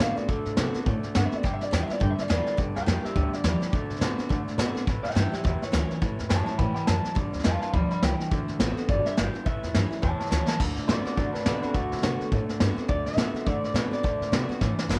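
A twangy, slightly broken-up electric guitar through a small old amp carries the melody with tape echo and a clean solo until 10.6 seconds in this rowdy, upbeat rockabilly excerpt at 209 BPM in D mixolydian with a swung feel, backed by a lo-fi second electric guitar riff, a full-bodied picked acoustic guitar with finger squeak, a woody, thumpy pizzicato upright bass, and an up-front vintage brush kit with dark cymbals and drum fills at 10.3 and 14.6 seconds, all in light reverb with a faint mains hum.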